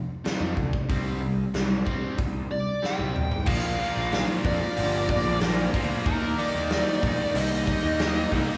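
A big arena sound wrapped in lush hall reverb carries this driving, gritty classic rock excerpt at 93 BPM in straight 4/4, where a double-tracked, overdriven semi-hollow guitar sits back in the mix playing a riff on F5 and C5 over a punchy, up-front acoustic drum kit and a growly, fuzz-laden picked bass. A dark, compressed fuzz lead guitar with wah, slapback echo and analog delay carries the melody from 2.5 s. After a drum fill, the music moves to Bb and Eb at 3.5 s, where a bright, cranked stack guitar adds its own riff, joined by a faint, shimmering fingerpicked twelve-string acoustic and a very quiet, shouting tonewheel organ with key click and slow rotary speaker.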